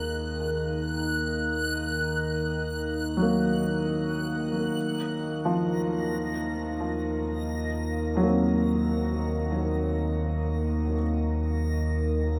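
In this melancholic, reflective ambient piece in free time, a felt-muted upright piano plays soft, boxy arpeggios carrying audible action noise and a delay, over a round sine sub bass that fades in and a vintage sawtooth drone warbling up front with chorus. High above, a reversed, granular texture glimmers bright and detuned through its own reverb as it fades out, while the harmony moves from Ebm to Gb/Eb at 4.8 seconds. A wet shimmer reverb with a 7.8-second tail envelops this excerpt, cut from a longer work.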